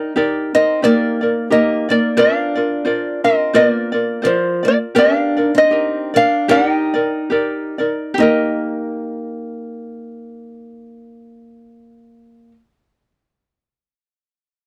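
A lilting swing on the eighth notes in 4/4 carries this short Hawaiian excerpt, with a relaxed tempo between 67 and 89 BPM that slows down from 2.2 to 8.2 seconds. The mood is sunny and dreamy, set in Eb major, with harmony drifting from Ebmaj7 to Bbadd9, back to Ebmaj7 at 5.0 seconds, and settling on plain Eb at 8.2 seconds. A fingerpicked ukulele carries the melody up front in a light, high register, while a second fingerpicked ukulele supplies accompaniment just beneath it. An old ladder-braced acoustic guitar, picked on aged strings, adds a woody, boxy second line in a lower range and sits a little further down in level. The sound is dry and close, in the manner of a 1970s studio, with a moderate booth ambience and a short decay that keeps each part intimate and present.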